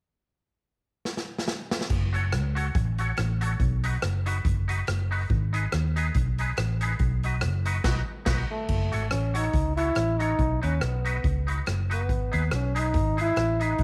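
A drum fill on a street-band kit with a boomy kick and dark cymbals opens this driving, mischievous ska at 141 BPM in F# dorian, soon joined by a round, foam-muted vintage electric bass and a twangy, clean electric guitar with ensemble chorus and slapback echo playing accompaniment over F#m, B and G#m, before a band accent around 7.8 seconds ushers in a warm, roomy trombone melody at 8.5 seconds, set in small room ambience.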